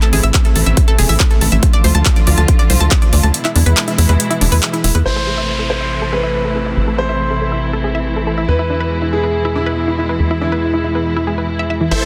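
Emotional, euphoric uplifting trance at 140 BPM in A harmonic minor, cut from a longer piece, where veiled muted strings and a round analog pluck arpeggio pump under a sidechain beside a punchy up-front kick, metallic hats, handclaps and a crash, with a tight sawtooth sequencer bass driving beneath; the kick drops out at 3.3 seconds, then from 5.1 seconds an intimate grand piano with audible action noise and dub echo joins over a downlifter and a filter sweep on the arpeggio, before huge detuned supersaw chords with phaser enter at 11.9 seconds over a dense, heavily limited master.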